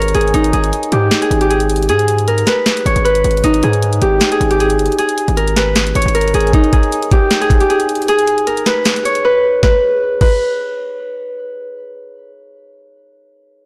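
Blown-out and overdriven with a light digital ambience, this menacing, eerie half-time trap cut sets a ringing, fingerpicked Celtic harp melody up front over a saturated, aggressive 808-style bass that drops out at 6.5 seconds and a knocking electronic kit of sharp snare, bright hats and crash that stops at 10.3 seconds, leaving the harp alone until 12.3 seconds.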